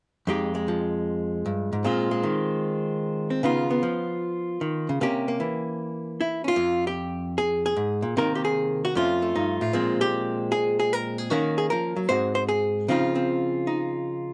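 This solo jazz recording is a short cut from a longer piece, swinging at 152 BPM in 4/4 with a cool mood in F minor. A single archtop guitar carries everything, an electric, hollow-body instrument that is miked and amplified, with a dark, clean, picked tone that is compressed and sits up front. The playing spans from F2 up to C5, beginning at 0.3 seconds on an Fm9 chord and moving through Bb9sus4, Db9 and C7b9 in its opening stretch. At 6.6 seconds a second section begins on Fmadd9, travelling through Cm7b5, F7b13, Ebm9 and Ab7 before settling on Dbmaj9 and closing at 14.3 seconds. A moderate club reverb gives the guitar a modest sense of room around its swung eighth-note feel.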